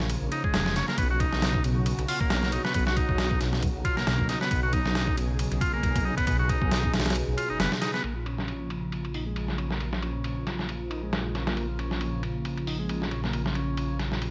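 A swung 136 BPM breakbeat groove in Bb phrygian rides on a gritty, compressed sampler-style drum kit, with a thumpy kick, medium-tuned snare, hi-hat and ride all low-pass filtered and up front, while a thick, menacing detuned saw bass holds the bottom. A buzzy vintage combo organ riff with light vibrato and tape echo enters at 0.3 seconds over a swirling, airy analog pad that pumps with sidechain, phaser and chorus as the chords shift from Bbm to Bsus2. After a break at 7.2 seconds, a filter sweep on the pad opens the second section at 8.0 seconds, all wrapped in light reverb and vinyl crackle for a swaggering, raw feel in this excerpt cut from a longer piece.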